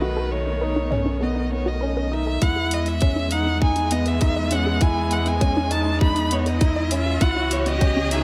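Set in light reverb and digital ambience, this tender, hopeful piano-and-strings electronica fragment features an expressive, up-front violin melody with vibrato, portamento and delay. It plays over rich bowed chamber strings, lush detuned unison pluck arpeggios, a soft felt-muted upright piano riff with delay, and a round analog bass that pumps under sidechain. A tape-warm deep house kit of hi-hat and toms enters at 0.9 seconds, a tight electronic kick arrives up front at 2.4 seconds as a build-up begins over chords moving from B7 to Emaj7 and C#m11, and a riser joins in the background at 3.8 seconds.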